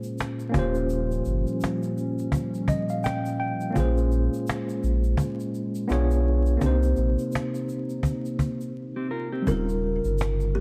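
Nostalgic and reflective, this lo-fi hip hop excerpt drifts on a swung groove, with a worn, slightly out-of-tune tine electric piano run through cassette tape sitting up front beside a snappy, close and dry cajon and a round, deep sub bass, all over a moody, detuned analog pad with chorus and a grainy egg shaker. The electric piano plays a fill at 2.3 seconds, and a break arrives at 8.8 seconds, where a dark, clean, fingered electric guitar briefly adds a second line. At 9.5 seconds a woody, hollow kalimba carries the melody through tape echo, all set in light reverb with vinyl crackle.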